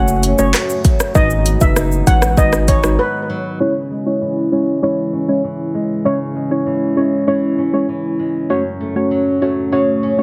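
Heavily compressed and nearly dry with a radio-like sheen, this sultry, tough dancehall piece opens with a shimmering steel pan melody trailed by delay, nasal filter-plucked chord stabs, a warbling detuned pad in the background and dark fingerpicked flamenco guitar arpeggios over a thick saturated sub bass and an up-front deep house kit of handclaps, hi-hat, kick drum, rim click and shaker, until the drums and bass drop out at 3.0 s for a break and a filter sweep runs from 3.6 s over the remaining guitar, stabs and pad.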